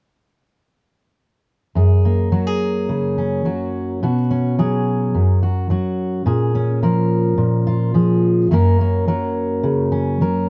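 A fingerpicked steel-string acoustic guitar carries this gentle, peaceful folk excerpt entirely on its own, sounding from 1.8 seconds to 10.5 seconds. Its jumbo body gives a dark, full-bodied tone, and it sits up front in the sound. The harmony moves through F#add9, Bsus2 and A#m7 before settling on F#, giving the short passage an open, unhurried glow. The straight 4/4 feel is calm and steady. Close, detailed microphones and very little reverb keep the guitar intimate and dry, as though heard from just a few feet away, in this fragment of a longer piece.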